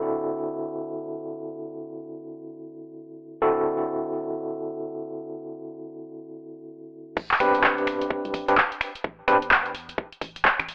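An overdriven tine electric piano opens this moody, late-night UK garage fragment, playing barky, gritty stabs with a fast tremolo and digital delay, sent through a combo amp and sitting up front on a D9 chord. The tune moves in a two-step garage feel at 128 BPM in 4/4, with a swung sixteenth-note lilt and a dorian colour centred on A. At 7.2 seconds the drop arrives on an Am11 chord, bringing in a tight, layered electronic kick and a punchy analog drum machine whose crash cymbal, finger snaps, handclaps and hi-hat sound tape-warm and forward, with low-pass filtering on the cymbals, snare and hats. Underneath, a hollow, organ-like FM bass adds dark, decaying notes with a fast attack, placed low in the mix. The piano stabs drop out at 9.4 seconds, leaving the beat and bass to carry the rest of the passage. A light reverb and a telephone-style tone colour the whole recording.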